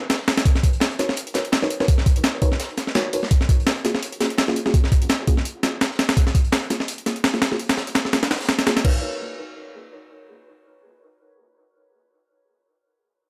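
The recording is dry and close, with the main breakbeat kit sitting up front and a raw, nostalgic air to this piece of drum and bass in the jungle style, carried by a swung sixteenth-note feel. A sampler-style breakbeat kit drives it, compressed and gritty, with a thumpy kick, a high-tuned snare, hi-hat and crash cymbal. Beneath it, a second breakbeat kit of acoustic hi-hat and snare sits very quietly, dark and saturated with a small-room character and a rolled-off top. A deep, mellow chord stab built from detuned triangle, sawtooth and sine tones warbles with chorus and dub echo, its fast-attack hits decaying softly as a filter sweep moves across it. The harmony runs from D#m7 to A#m7 and lands on Bmaj9/D#, and once both kits stop near 8.9 seconds, the vintage-sounding stabs carry on alone until 12.4 seconds.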